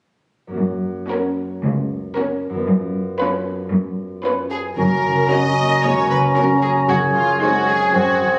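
This playful, whimsical cinematic film cue in F# major moves at 114 BPM in a straight 4/4, with a quirky lightness. A thumb-plucked concert harp opens at 0.5 s with ringing arpeggios, joined almost at once by a distant cello section holding the bass. A chamber violin section soon carries the expressive, soft-attacked melody, while a lush studio violin section adds a second line and violas fill in smooth, even accompaniment in the background. When the second section arrives at 4.8 s, a close-miked, clear oboe and a mellow clarinet add second lines over a roomy bassoon, with a focused double bass section underneath and a tight, warm French horn section sustaining chords from 5.3 s. The harmony moves between F# and dominant-seventh chords over an F# bass, heard through a wet scoring-stage reverb and a phone capture that adds a club-like room sound to this brief cut from a longer piece.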